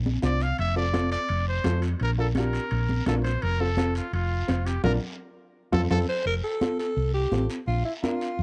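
A straight, danceable cumbia groove in 4/4 drives this sunny clip from a longer piece. Close, dry congas played with hard hands ring out high-tuned, while a faint, band-limited guiro scrapes underneath. A round, punchy hollow-body electric bass sits up front, and a dark, woody upright piano with a slightly detuned, short-sustained tone fills in the accompaniment as the chords move between Bb and F. A bright trumpet with vibrato takes a solo from the opening, with distant, very quiet metal-shell timbales ringing in the background, and at 4.8 seconds a drum fill arrives together with a band accent. At 5.9 seconds a raspy, gritty alto saxophone with scooped notes and slapback echo steps up front to carry the melody into the next section, all captured in a 1970s-style studio sound.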